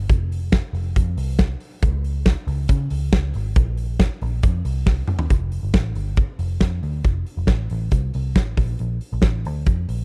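A straight 4/4 pulse at 138 BPM drives this youthful, breezy stretch of jangly indie pop, cut from a longer piece. A big rock drum kit, acoustic and up front with a big-room character, sets the beat with hi-hat, punchy kick, a medium-tuned snare and toms, its tone dark and smooth. Beneath it runs a vintage muted picked electric bass, amped and foam-muted with a round tone, ranging from F1 to Db3 and sitting a little lower in the mix than the drums. A drum fill at 4.9 seconds leads into a short new passage, and from 7.0 seconds the music settles into F major, with tuning at A4 = 441 Hz. The sound is dry and close, carrying the character of a 1970s-style studio recording.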